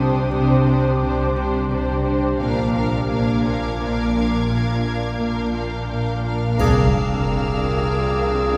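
Mysterious and tense, this short cut from a cinematic suspense score moves at 86 BPM in 3/4, its chords shifting from Csus2 to Bb and settling on Bb/C. A bowed violin section carries the soft-edged, expressive melody with vibrato, while a second violin section hovers high in the background as a focused texture, and violas fill the middle with portamento-inflected accompaniment. Beneath them a very quiet cello section and woody double basses hold the low end, joined by a sustained, rumbling, ominous drone with phaser and a moody, detuned ambient pad with chorus sitting in the background. A fingerpicked Celtic harp rings out a low riff throughout. At 5.9 s a mellow, distant clarinet adds a second line, and at 6.6 s a third violin section joins on a single note as a huge, bright impact lands alongside a faint taiko hit and a close, dry triangle. The whole ensemble sits in a reverberant church or concert hall, giving the strings a lush, roomy bloom.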